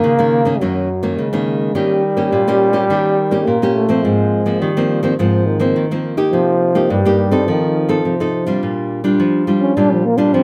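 In a moderately reverberant studio, this sunny, lively samba excerpt at 105 BPM pairs an up-front, full-bodied, fingerpicked classical nylon-string guitar, moving through chords such as Gb6, Ab69 and Cm7, with a mellow, breathy trombone carrying a jazz-style second line with vibrato, scooped notes and a whispered, intimate tone touched by slapback echo, before the trombone takes a solo at 8.6 seconds over a closing Bb6.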